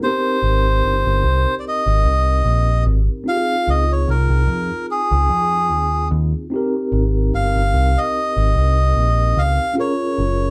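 A relaxed 4/4 groove with a light swing on the sixteenths sets up this smooth, sweet slice of lovers rock reggae, cut from a longer piece. A reedy, breathy melodica carries the melody up front, its nasal, plastic-cased voice smooth and dark. Beneath it, a mellow tine electric piano supplies clean accompaniment through its built-in speakers, sitting further back in the mix. A deep dub picked electric bass enters at 0.4 seconds, round and amped, with a direct, up-front presence. The harmony moves through lush major-seventh chords, from Abmaj7 to Dbmaj7, back to Abmaj7, and on to Gbmaj7 near 9.8 seconds. The band plays live together in a small room, with a moderate reverb lending a close, intimate sound.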